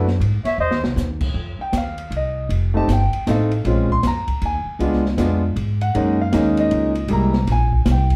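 A clear, up-front grand piano and a woody upright bass open this smoky, swinging small-group jazz waltz, with an open drum kit of dark cymbals and a boomy kick close behind, while a raspy, growling clarinet and a vintage-toned trumpet with scooped notes make a fleeting appearance at 0.5 s just as the drums play a fill at 0.6 s, all heard from further back in a reverberant club room.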